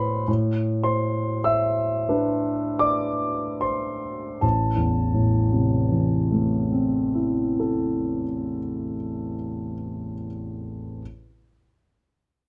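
In a rubato 6/8 that slows through the opening 4.4 seconds, this hazy, mysterious impressionist solo piano passage, cut from a longer piece, lets a clear, up-front concert grand with deep bass and long natural sustain ring out an added-ninth minor chord that settles into a plain minor chord at 4.4 seconds, softened by light reverb.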